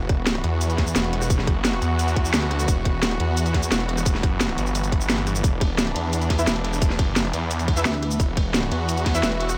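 Lush bowed symphonic strings holding sustained chords and a snarling, growling distorted saw bass pump from the outset of this dark, mechanical technical drum and bass excerpt at 174 BPM, driven by a tight, up-front electronic kick and a kit of cracking snare, hi-hat, ride cymbal, rim click and shaker in studio reverb, with a bold, punchy orchestra-hit-like synth stab trailing dub echo from 6.4 seconds and a brief pulsing, chorused pluck wobble bass at 7.9 seconds.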